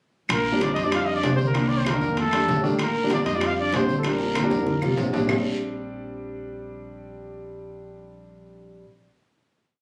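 A clear, lightly vibratoed trumpet leads this short, sophisticated and danceable Afro-Cuban jazz piece in Bb major at 192 BPM with motif-based call phrases, doubled an octave below by a very quiet, breathy trombone with scooped notes. Beneath them, a pizzicato upright bass plays a woody tumbao that anticipates the chords, and a boxy upright piano adds syncopated rootless chord stabs. The percussion is built from ringing timbales with shell pattern and bell, congas with slaps and open strokes, bongos in steady eighths with hand bell, a two-bar claves time line and a raspy guiro. A drum fill runs from 4.0 to 5.3 seconds before the piano and bass hold the final chord until 8.8 seconds, all heard through a phone-in-the-room sound with club reverb and compression.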